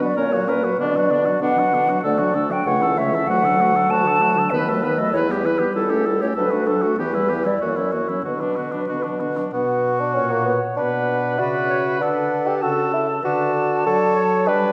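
Spirited and cheerful, this quick classical-period movement for wind quintet moves at 97 BPM in 2/4 with a straight feel in B minor, its harmony passing through D, E minor and F#7 before the opening phrase returns at 9.5 s. A hollow, tongued concert flute with vibrato carries the melody over a lightly vibrato oboe second line, while a mellow, soft-attack French horn and a clarinet fill the accompaniment. A present, warm bassoon anchors the bass, all set in the wet reverb of a concert hall.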